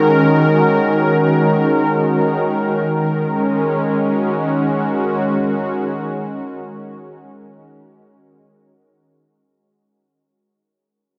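A smooth, detuned sawtooth analog pad sits up front, holding soft-edged sustained chords on F# with chorus and tremolo shimmer, in a serene, reflective free-time ambient fragment bathed in a huge, wet reverb and worn, warbling cassette-tape pitch drift that fades out from 0.6 to 9.2 seconds.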